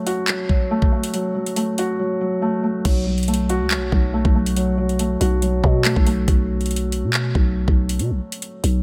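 A digital ambience frames this tense, ominous fragment of drill hip hop, cut from a longer piece and set at 140 BPM in 4/4 with a half-time feel. A felt-muted upright piano opens the accompaniment at 0.0 seconds, its dark, intimate tone softened by thick felt and a low-pass filter, with a filter sweep over the first stretch as it moves from F#m. The drill drum kit sits up front with a knocking kick, metallic hats, handclaps and crash cymbal, its sound electronic and produced. At 2.9 seconds a growling 808-style bass enters on a B5 chord, buzzy with a fast attack that decays. A break arrives at 6.3 seconds and carries through to the close.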